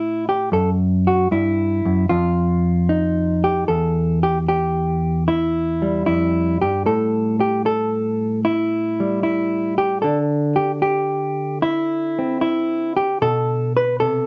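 Swung eighth notes in 4/4 carry this cool, smoky fragment of solo jazz, where a single clean, dark, compressed hollow-body electric guitar, fingered and sitting up front, moves through F#7(no3), Em, A5, Dsus2 and Bm7 from 0.0 to 14.3 seconds, wrapped in a moderate studio reverb that gives the room some air.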